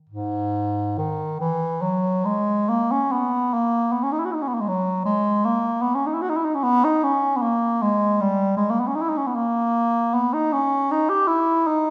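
A warm bass clarinet carries this brief classical passage entirely on its own, sounding from 0.1 to 11.9 seconds and moving between G#2 and G4. The playing is free and expressive, with a rubato feel in 3/4 that drifts between 62 and 84 BPM. Set in G# minor, the mood is meditative and yearning, and the solo line sits up front in the sound. A recital hall's reverberant acoustic, with a 1.4-second decay, surrounds the instrument in the resonant space of a church or concert hall. The recording is a short section taken from a longer piece.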